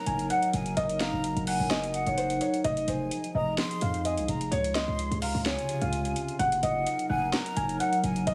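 A felt-muted upright piano carries a soft, filtered melody with delay, shadowed by a breathy, hollow jazz flute and a dark analog pad thick with chorus and phaser, before a punchy 808-style bass and a trap kit with sharp snare, metallic hats and gritty 12-bit texture arrive at 0.1 seconds in this brooding, hard-hitting half-time trap cut, moving through Gb6, Fm7 and Dbmaj7 under a heavily compressed, radio-like sheen.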